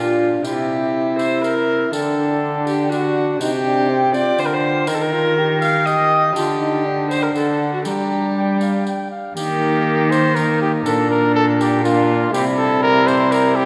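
An up-front, reedy viola with a gut-string tone carries the second line beneath a lightly vibrato cornet melody in this solemn, rustic renaissance-style consort dance at 121 BPM in 3/4, alongside a distant bright trombone accompaniment and a nasal bowed cello bass, with a soft, jingly, dry tambourine entering at 0.4 s, all set in a wet concert hall and cut from a longer piece.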